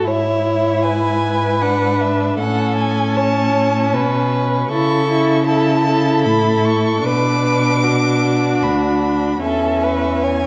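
Tender and warm, this excerpt from a slow, romantic classical movement for string quartet in A major sways in a rubato 3/4 at 77 BPM, with a clear, even first violin singing the melody up high over a second violin whose soft attacks and expressive portamento shape the inner line, a smooth viola accompaniment, and a rich, intense cello bass sitting up front, all bowed with vibrato and bathed in a wet recital hall reverb that lasts 1.3 seconds within a dark, warm production.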